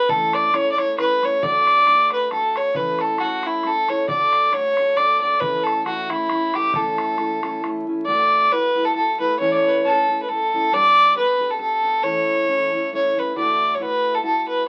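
Bright and lively, this Celtic folk waltz moves in a lilting three with a light swing, heard as a short excerpt cut from a longer piece. A bowed fiddle carries the melody up front, its nasal, reedy gut-string tone smoothed at the top. Beneath it, a fingerpicked steel-string acoustic guitar gives full-bodied jumbo accompaniment, with fresh strings and an occasional finger squeak. A boomy, open bodhran sits in the background through the first half and drops out at 7.8 seconds, just before the second section begins at 8.1 seconds and the harmony shifts to add9 colourings. The whole performance sounds like a very old 78 rpm record, with vinyl crackle and a modest small-room reverb.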